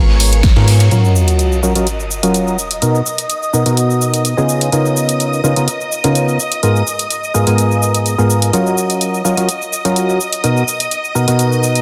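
A dense, heavily limited master with light digital ambience frames this bittersweet, soulful piano house passage, where an up-front, hollow, nasal organ stab riff with chorus and delay and a shimmering, vintage string machine playing sustained violin chords both pump and carry filter sweeps from 0.9 s; a dark, organ-like FM bass and an overdriven electronic kick appear only briefly at the start; a gritty, saturated garage kit with ride and snare sits in the background for under a second; an overdriven analog drum machine keeps cabasa, hi-hat and punchy snare going from 0.2 s onward; and a sub drop impact lands at 0.9 s over chords of G#m69, F#maj7, Bmaj7 and C#13.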